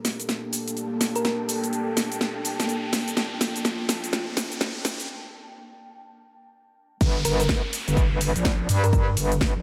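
Bass house with a gritty, aggressive mood and a swung groove, cut from a longer piece. A moody, detuned analog pad holds sustained chords under chorus and sidechain pumping. An ethereal, airy pad adds a mellow, reverberant texture until 5.1 s, while electronic risers and downlifters thread through the build-up. The house drum kit plays a fill through the opening with cabasa, hi-hat, ride cymbal and a cracking snare, and a round, tine-like thumb-piano-style pluck with chorus and delay offers a brief note early before returning later in the background. A short break gives way to the drop at 7.0 s, where a punchy, tape-warm electronic kick arrives up front beside a metallic, wobbling FM bass that is overdriven, compressed and pumping. The whole mix sits in a moderate plate reverb, and the drums carry a large-room sheen.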